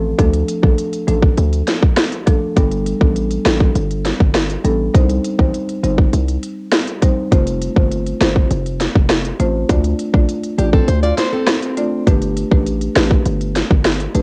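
A home-recorded cassette sound with light reverb frames this tough, hypnotic dancehall excerpt, where an overdriven electronic drum kit with sampler grit, a tight kick and sharp snare sits up front over a punchy, heavy 808-style bass and woody rosewood marimba moving through Dm, Gadd9, Cm and F, while a bright, fingerpicked nylon-string guitar adds brief arpeggios from 10.6 to 12.0 seconds as the kick drops out at 10.9 seconds.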